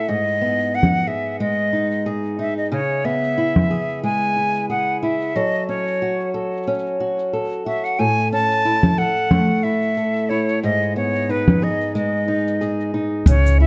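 Folktronica with an autumnal, intimate mood and a light swing, this excerpt sets an airy silver concert flute melody, with vibrato and a soft attack and washed in plate reverb and digital delay, over fingerpicked arpeggios from an old ladder-braced acoustic guitar whose boxy, woody tone carries vintage 12-bit sampler grit. Electronic shaker, congas and crisp hi-hat, re-recorded in a large room and low-pass filtered, sit up front as the chords move from G#m through C#m7, F#m and A before returning to G#m. At 13.3 s a thumpy pizzicato upright bass and a dark, boomy kick drum arrive just as the passage cuts off.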